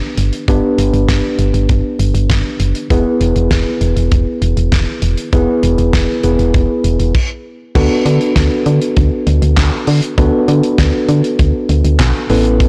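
A punchy, round FM bass sits up front in this upbeat, nostalgic synth-pop excerpt, its digital tone dark, with a fast attack that quickly decays. A damped 70s drum kit supplies a fat snare, tight kick, hi-hat, handclaps and crash cymbal, its dry, mid-forward sound rolled off at the top. A mellow tine electric piano opens the piece alone at 0.0 s, clean and direct yet worn and slightly out of tune, moving from G to E in a straight 4/4 feel. The music halts for a stop between 7.1 and 7.8 s, then resumes on a D6 chord for a new section. Light reverb and small room ambience surround the parts, and the whole recording is blown-out and overdriven.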